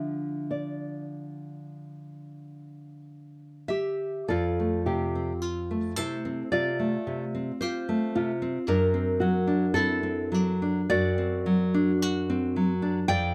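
A full-bodied, fingerpicked nylon-string guitar with fresh strings sits up front, its deep classical tone and audible finger squeak carrying the accompaniment. A smaller, thumb-plucked nylon-string guitar sings the melody in this yearning, melancholic romantic duo. The slow, rubato 4/4 piece, around 46-58 BPM, moves from D minor into F major at 4.3 seconds, and it is heard through close, detailed microphones with light reverb as a fragment cut from a longer work.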